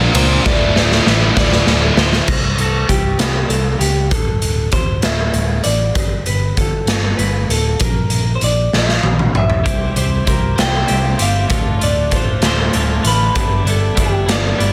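A twangy, slightly broken-up guitar through a small old amp carries the slapback-echoed melody over a brief opening burst of three heavy riffing guitars (a biting overdriven one, a scooped, double-tracked high-gain one and a very quiet sludgy one) that all drop out at 2.3 seconds. Beneath it, an amped electric bass and an up-front, gritty garage drum kit with a punchy kick and pumping stone-room sound drive this brooding, angsty excerpt of quiet-loud alternative rock at 65 BPM in 6/8 in D minor, with drum fills at 0.5 and 8.7 seconds. At 9.6 seconds a clean, compressed twelve-string electric guitar joins with arpeggios, all under light reverb and a dense, heavily limited master.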